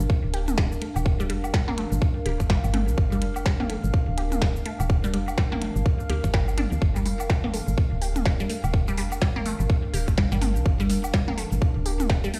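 Played through a big sound system in a bare stone room with light reverb, this short cut from a longer minimal techno piece in G minor runs at 125 BPM with a 16th-note swing, its clinical, sparse mood carried by a tight, up-front electronic kick, a woody, round FM bass pumping from the sidechain, a minimal click kit of tiny snare, clicky hats and cabasa, overdriven electronic toms and woodblock with delay, a squelchy, resonant blip pluck riff phased and echoed from 0.3 seconds, and a warbling, nostalgic lo-fi pad with chorus sustaining a single Gm chord throughout.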